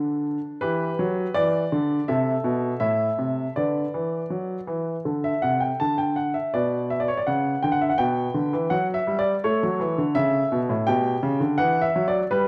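This classical-period piano sonatina moves in an even, straight 4/4 with a graceful, cheerful mood, and the short passage is cut from a longer piece. A solo baby grand piano carries everything from 0.0 to 12.5 seconds, spanning A2 to A5 with a clear, natural tone, long sustain and audible action noise that lends an intimate, close-up character. Sitting up front, the instrument is framed by a moderate recital hall reverb, while the overall production leans dark. After an unaccompanied opening, the harmony begins on Em at 0.6 seconds and passes through Am, D69, D5, Bm, G/B and A before returning to G/B. The result is a poised, songful fragment that feels like one part of a larger movement.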